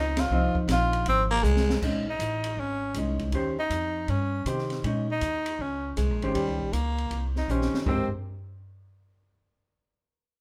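Small-group swing and bop jazz at 159 BPM in Ab major, this playful, swinging excerpt opens with a band accent at 0.1 seconds as a bright tenor saxophone with vibrato and a soft attack carries the melody up front over pizzicato upright bass with a woody, thumpy tone. An open acoustic drum kit with dark cymbals, a high-tuned snare and a boomy kick adds fills, while a clean, fingered hollow-body electric guitar comps through chords moving from Bbm11 and Eb13 toward Abmaj9. A raspy, growling baritone saxophone adds a close-miked second line in a brief burst early on and returns at 6.0 seconds, with the band placed in a moderate large studio reverb.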